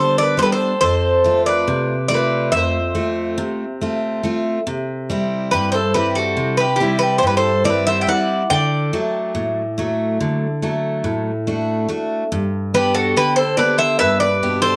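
This excerpt moves in 9/8 with a straight feel, a warm and calm piece of Greek folk music played by a small bouzouki band. The Greek bouzouki carries the melody up front, its picked double strings bright and metallic, with some strings doubled at the octave for extra shimmer. Beneath it a bowl-back mandolin plays a second line, softer and rounder in tone, its picked double courses touched by a slapback echo. A jumbo steel-string acoustic guitar, also up front, picks the accompaniment with fresh strings and a full-bodied sound that spans the low range. The harmony settles on G, moves through F, C and D, and returns to G as a new section begins at 12.3 seconds, all three instruments sounding together in a moderate studio reverb from start to finish.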